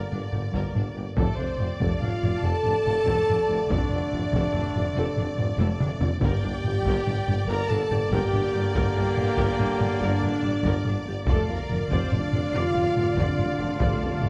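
Rolling in a straight 12/8 at 95 BPM in G minor, this epic, dramatic cinematic orchestral cue, cut from a longer piece, drives on hard-stick taiko with a fill at 5.6 seconds and dry, articulate timpani that enter at 6.2 seconds and return for a closing fill from 11.3 seconds, beneath a lush, expressive violin melody centred on D5, a distant second violin line, smooth violas, mellow French horns and bright background trombones sustaining chords, and a bass of woody double basses, cellos and a clear tuba, set in a dark production with moderate recital-hall reverb.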